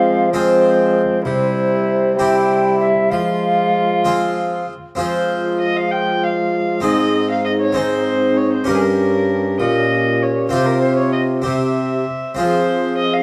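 The recording has a dark, warm sound, set in a large studio with a moderate reverb of about 1.5 seconds. It is a courtly, solemn renaissance-style consort dance in 6/8, a short passage cut from a longer piece. A hollow, airy tenor recorder with a wooden tone carries the melody, tongued with a touch of chiff and vibrato, while a single distant violin plays a second line with a nasal, gut-string, period-style tone. Beneath them a close-miked, dry harpsichord with two sets of strings plucks full French-style accompaniment, a soft-attack trombone adds mellow support with vibrato, and a smooth-topped bassoon with light vibrato plays the bass. A second passage begins at 5.0 seconds, and its harmony passes through a diminished chord and a suspended chord before returning to the home minor chord at 12.4 seconds.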